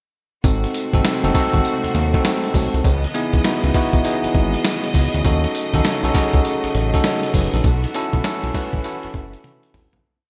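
Punchy and slick, this short new jack swing piece in R&B style rides a hard-swung drum-machine beat from a gritty, compressed, pitched-down sampler-style kit, with a thumpy kick, medium-tuned snare, hi-hat, tambourine and toms sitting up front under gated reverb. A fat, detuned sawtooth analog bass, wave-folded with a moving notch, plays a bouncy swung synth-funk line full of muted ghost notes and chromatic approach notes. A bell-like tine electric piano adds clean, direct, syncopated stabs in rootless voicings, decorated with grace notes and short fills. Behind them, a studio string section holds an intense, bowed, vibrato-rich pad through lush chords such as G#7b9 and C#m9. The whole chorus sits in a bright 1980s-style digital production with a hall reverb, fading out from 7.6 seconds, with a drum fill arriving at 9.4 seconds as it fades.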